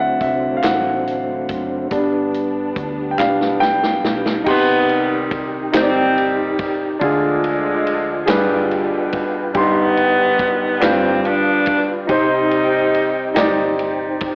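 Set in a straight 6/8 at a slow 47 beats per minute, this soulful, fervent slow gospel passage is cut from a longer piece and has a lo-fi character, like a home cassette recording heard over AM radio, with moderate room reverb. A concert grand piano with deep bass and plate reverb sits up front and takes a solo through the opening 4.5 seconds. Beneath it are a soft, flute-like tonewheel organ with slow rotary speaker and chorus vibrato, a round, dark hollow-body electric bass, and a very quiet, woody string section holding bowed chords until 4.4 seconds. Crisp, close group handclaps come in just after the start and sit behind the band, and a swinging big-band drum kit with dark cymbals and a punchy kick plays a fill into the second section. There the harmony settles into C harmonic minor and a saxophone section takes the melody, its jazz-style vibrato up front with cassette tape colour and plate reverb. 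The chords run from D7 and G into Cm, Ddim, G7b9 and G7 before coming home to Cm.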